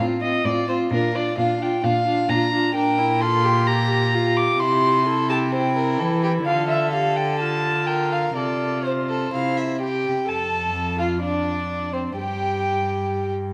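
Graceful and spirited, this quick classical-period movement for string quartet in F major moves at 129 BPM in a straight 4/4, heard as an excerpt cut from a longer piece. A dark, nasal first violin sits up front with the melody, reaching up to D6, while a second violin with a biting edge and light vibrato carries a second line and a viola supplies accompaniment. A rich, close cello anchors the bass, carrying on briefly after the upper strings stop at 13.3 s, with every part bowed in a reedy, gut-string period style and set in a recital hall's reverb as the harmony settles on F before falling away at 12.2 s.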